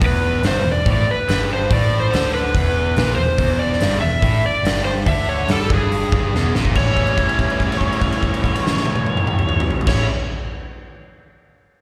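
A straight 4/4 groove drives this swaggering, raunchy blues rock and southern rock fragment, with a fat-snared, boomy-kicked arena drum kit, a dark, round, foam-muted bass, a bright, double-tracked guitar riff and an up-front slide guitar melody, both guitars overdriven and carrying slapback echo, heard as a live gig through the venue's PA with recital hall reverb, where a drum fill at 6.3 seconds leads into a held note from 6.8 seconds.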